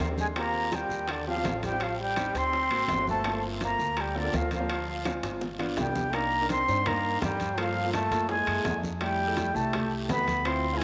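A straight 4/4 groove at 166 BPM drives this sophisticated Afro-Cuban jazz excerpt in G minor: low-tuned congas, round bongos, ringing metal-shell timbales in the background, a raspy guiro and distant woody claves sit beneath a thumpy pizzicato upright bass and natural grand piano, while a breathy, up-front concert flute carries the melody over a brilliant, punchy trombone second line full of vibrato and scooped notes, with a drum fill at 5.1 seconds leading into the second section and a moderate plate reverb lending space.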